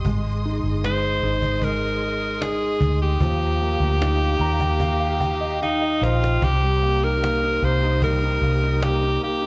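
In a straight 4/4 feel, this emotional, heartbroken pop ballad pairs a snappy cajon in the background with a dark, round, foam-muted vintage electric bass up front, while an intimate grand piano with audible action noise, long sustain and slapback echo carries the accompaniment over Ab, Ebadd9 and Cm7. A bright alto saxophone with light vibrato enters at 0.9 s to take the solo melody up front, also touched with slapback echo, as a distant bowed string section holds warm, soft-attacked chords with portamento behind it. The piano plays a fill from 4.0 s and the cajon adds one at 5.6 s leading into a new section, with the performance coming through a live venue's PA and small-room club reverb.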